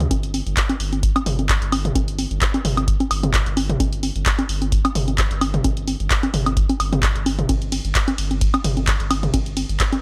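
A punchy analog drum machine and a round, dark bass open this driving, gritty acid house excerpt at 130 BPM in 4/4, with a light swing on the sixteenths. Up front, the tape-warm drum machine brings congas, handclaps, hi-hat, ride cymbal, toms and woodblock, re-recorded in a large room, while a deep analog kick drum with a warm tape color enters at 0.1 seconds. Underneath, the sine-and-triangle bass reaches down to G1 with a fast attack and sustained notes, pumping from sidechain compression, and the overall sound is dry, with little reverb.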